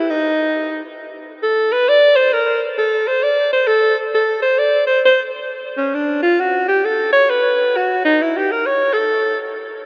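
Swung eighth notes in 4/4 carry this sophisticated, playful jazz fragment, in which a bright alto saxophone plays up front alone from 0.0 to 9.4 s, with a second phrase starting at 5.5 s. Its vintage tone blends subtone, light vibrato, soft attacks and scooped notes, touched with delay. The whole mix is soaked in a huge, wet ambient reverb with a long tail, and the muted top end gives it a dreamy haze.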